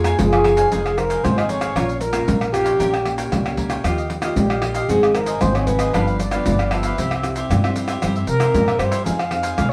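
A live band in one stone room, wet with reverb, plays this bittersweet, yearning samba and choro cut from a longer piece, moving at 115 BPM in F minor. A breathy, distant trombone whispers a second line in the background only until 0.7 s, while a mellow, horn-like synth lead with chorus, vibrato and a warbling, round tone carries the melody from 0.2 s. Beneath it, a crisp picked cavaquinho and a dark, fingerpicked nylon-string guitar sound over a woody, thumpy pizzicato upright bass, with up-front maracas, pandeiro, tamborim and a deep surdo played with soft hands, as the chords pass through Gdim/Bb and G7 before settling on Fm7.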